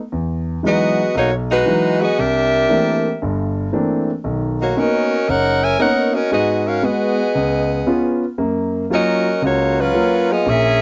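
Brassy and swinging, this short jazz excerpt at 116 BPM sets a tight, bright, close-miked saxophone section up front on the melody from 0.7 seconds, over a concert grand piano with a natural tone and deep bass that accompanies through chords such as Emaj9, C13 and Bmaj9 before settling on F#maj7, all captured in a dry, close 1970s-style studio sound with light reverb.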